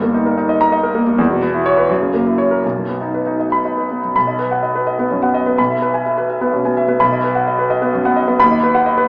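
An up-front concert grand piano opens this stormy, agitated fragment of a virtuoso classical piano study, its intimate, natural tone carrying deep bass, audible action noise and a span from G1 to B5. Played solo in B major in a rubato 6/8 at about 84 BPM, tuned to A4 = 444 Hz, it moves through D#/G, C#m7/E and F#7 before settling on B at 2.6 seconds, with a new section beginning at 4.2 seconds and closing on B/D# at 8.4 seconds. A wet stone-room reverb surrounds the piano, and the overall sound has the character of a small speaker across its 9.1 seconds.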